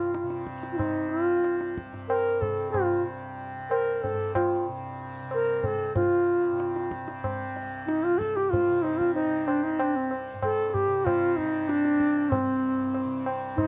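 A reedy bass bansuri carries the melody, up front and close-miked, its pure tone marked by vibrato and tongued notes and set in plate reverb. Beneath it a softly plucked tanpura lays down a buzzing, shimmering drone, while high-tuned, ringing tabla join at 0.1 s in a 5/4 metre. This meditative, solemn Hindustani classical passage, cut from a longer piece, quickens throughout and moves into a new section at 6.0 s within a moderate studio ambience.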